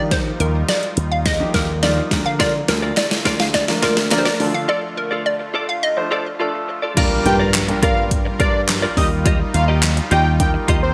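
A hollow, bouncy square pluck carries the melody over polished grand piano, a very quiet smooth supersaw and a punchy slap bass with an envelope filter, the piano and bass pumping against a deep house drum kit with a deep kick and gated reverb, before a clean, picked electric guitar riff enters at 2.4 s, followed by crisp group handclaps at 3.0 s, and at 7.0 s a very quiet impact marks the drop into a fat, nasal analog lead with vibrato in this bittersweet, energetic dance-pop passage with bright 1980s-style digital production.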